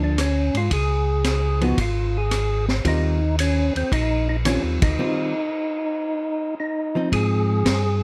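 A greasy, soulful soul jazz organ trio groove in swung 4/4 opens with a fat, lightly overdriven tonewheel organ carrying the melody through a slow rotary speaker, its percussive third-harmonic attack sitting up front over a round, dark organ bass line with chorus vibrato and a clean, picked hollow-body archtop guitar comping with compressed, shadowy tone. A vintage acoustic kit with a high-tuned snare, punchy kick, rim clicks and dark, rolled-off cymbals comes in at 0.2 seconds. The band hits an accent at 4.7 seconds before a break from 5.0 to 7.1 seconds, all set in light reverb in this brief cut from a longer piece.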